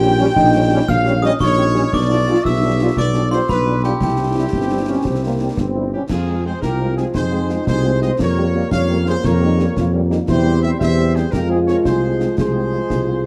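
A dusky, reverberant wind-band recording captures a stern, martial march in F minor at 115 BPM in 6/8, cut from a longer piece. A classical-style trumpet section with light vibrato carries the melody over a punchy, up-front tuba bass, while a pure flute ensemble, a smooth-topped euphonium and a glockenspiel with brass mallets add second lines, the sparkling bells ringing only until 5.9 s. Mellow French horns and trombones fill the background with accompaniment and sustained chords, and a close, dry snare drum, bass drum and dark clash cymbals join at 0.4 s.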